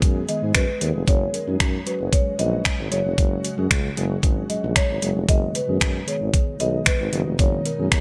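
A layered, up-front pop drum kit with a knocking kick, metallic hats, finger snaps and gated reverb drives this summery, carefree dance-pop excerpt at 114 BPM, where a round, woody soft-mallet marimba carries the melody over a mellow tine electric piano, an ethereal airy pad with ensemble chorus, and a pumping tuba bass with light vibrato, moving through G#m and F#sus2 in a bright 1980s-style digital production, with a very quiet electronic downlifter ending at 1.1 seconds.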